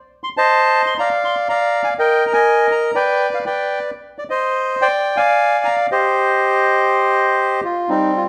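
Set in a moderate large-studio reverb with a slightly distant vantage, this brief, sultry and dramatic tango excerpt features a solo bandoneon, reedy and boxy and placed up front, playing rubato from 0.2 to 8.3 seconds over chords that move from Cm6 through Bb/D, G/B and Ddim to a closing Eb6.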